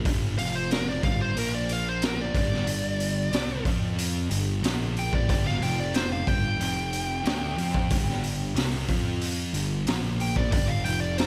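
A sludgy, double-tracked distorted guitar riff opens this raunchy, driving blues rock and southern rock excerpt at 92 BPM in 4/4, moving through G5, F5 and Bb5 chords. A growly fuzz bass and a gritty, up-front garage drum kit with a punchy kick and high-tuned snare join at 0.1 seconds, and a smooth overdriven lead guitar solo enters at 0.4 seconds with a dark, picked tone. Light reverb and small room ambience keep the power-trio sound raw and close.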